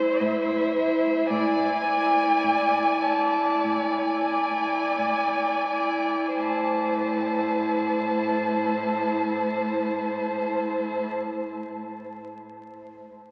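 Elegiac and yearning, this slow romantic string quartet excerpt in A minor drifts in rubato at 41-55 BPM, slowing through its first 6.4 seconds before moving into a new section, with the strings tuned to A4 = 435 Hz. Two up-front bowed violins carry the melody and a soft-attacked second line, both singing with vibrato, portamento and a smooth top, while the viola holds an even accompaniment on E4 and a quieter cello sustains a low A2. Everything sits in a vast cathedral reverb and comes through the crackle of a very old 78 rpm record, giving the warm strings a distant, haunted glow.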